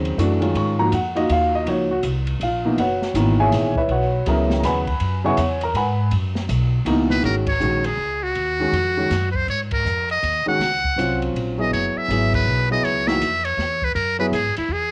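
A lilting 3/4 swing at 161 BPM drives this modal jazz fragment, its eighths gently uneven and its mood spiritual and searching as the harmony drifts between Ab9sus4 and Gb9sus4. An up-front concert grand piano comps from the start, its intimate tone carrying deep bass and audible action noise through a cassette-tape haze, while a woody pizzicato upright bass with steel strings anchors the low end. An open jazz drum kit of hi-hat, kick, ride and snare sits further back, with dark cymbals, a high-tuned snare and a boomy kick in a small-room sound. At 7.1 seconds a trumpet with a metal mute takes the solo melody, close-miked and buzzy, thin yet brilliant, with light vibrato and scooped notes. The band lands accents at 7.4, 9.7 and 12.3 seconds, and the home cassette recording wraps it all in light reverb and modest room ambience.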